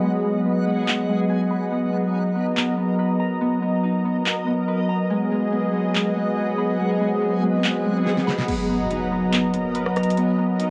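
A half-time groove at 142 BPM in 4/4 arrives at 0.9 s on an electronic, tape-softened R&B kit, with a fat snare, metallic hi-hats, handclaps, rim clicks and crash cymbal, up front, until a short fill gives way at 8.5 s to a kickless stretch. This atmospheric cloud-rap excerpt in B major feels dreamy and blissful, moving from G#m7 to Bmaj7 over a detuned sawtooth analog pad with chorus and slow-attack sustained chords, while a mellow, ringing fingerpicked Celtic harp plays arpeggios through tape echo in the background. A reversed, granular swelling texture drifts quietly through the mix, a faint electronic swell and impact land near the end, and the whole home cassette recording carries a wet studio reverb and a long filter sweep.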